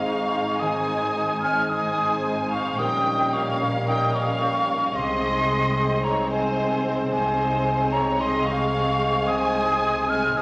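A slow, lyrical orchestral passage from a romantic symphonic movement opens with the full ensemble at once: a lush, vibrato-rich violin section carries the serene melody under rubato, while an airy, up-front silver flute, a second, very quiet clear violin section and a warm, very quiet clarinet trace supporting lines above and within the texture. Beneath them, a dark bassoon, a viola section with expressive portamento and a ringing, fingerpicked harp form the background accompaniment. Smooth, even double basses and a focused cello section anchor the bass, and a very quiet, mellow French horn section holds sustained chords until 9.7 s, all set in a wet concert-hall reverb.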